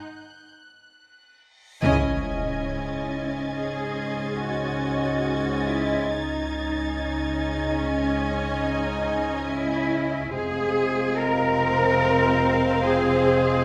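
Drenched in wet scoring-stage reverb, this tense, uneasy cinematic fragment in free time opens on high, close violins and a rich viola section until 1.8 s, when a huge, bright reverse cymbal and sub drop, timpani and the full ensemble arrive with an accent on C#madd9, bringing a lush, up-front cello line, woody double basses, dark French horns and distant, roomy trombones in sustained chords, with softly attacked, expressive violins carrying the melody and a second line before the harmony moves to Fm at 10.3 s.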